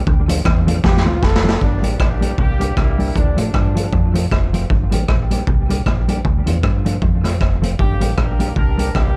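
Ska with a bouncy, joyful swing, cut from a longer piece, where a raw garage drum kit with a gritty, boomy kick sits up front beside a deep, round fingered electric bass and a mellow electric guitar treated with tremolo and tape echo. A brilliant, forceful trombone solo opens the way over a drum fill, and at 1.6 seconds a tight horn section with light vibrato and tape echo takes over the melody, returning at 7.8 seconds. Light reverb and a dark production keep the whole cut snug.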